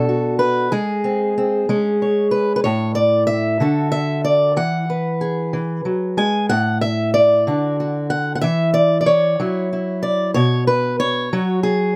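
A fingerpicked steel-string acoustic guitar with a warm, parlour-style tone plays alone and up front in this gentle, hopeful folk excerpt, moving at 62 BPM in a straight 6/8 and tuned slightly low to A4 = 439 Hz. The harmony drifts from Bm through G#, D and Eadd9, with brief stretches between chords that outline a clear chord only loosely, before reaching F#5 around 9.4 seconds and loosening again. Close, detailed microphones and a light reverb keep the guitar in clear focus.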